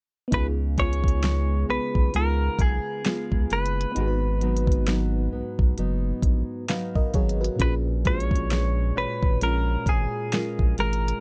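Contemporary R&B with a late-night, moody feel, where a bright, twangy clean electric guitar carries the melody over a dark, thumb-plucked nylon-string guitar's arpeggios, an FM electric piano with tremolo and phaser in the background, a saturated sine sub bass and an up-front electronic kit with knocking kick and fat snare, while a delicate, bell-like celesta with analog delay joins at 0.8 seconds, all in a dry, dark production moving from C#7 to G#m7 to A#m7.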